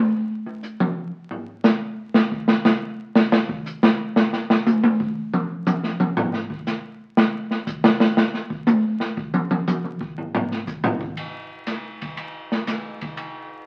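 Vinyl crackle from a very old 78 rpm record opens this short slice of playful, relaxed jazz, and an open acoustic drum kit comes in at 0.5 seconds. The kit plays alone as a swinging solo in 4/4, moving across hi-hat, ride cymbal, a medium-tuned snare, toms and a boomy kick. Its sound is dark and smooth, with a rolled-off top, and it sits up front in a small room. Moderate studio reverb gives the kit some air. At 11.2 seconds the solo gives way to a new passage, and the drums stop at 13.3 seconds, shortly before the cut ends.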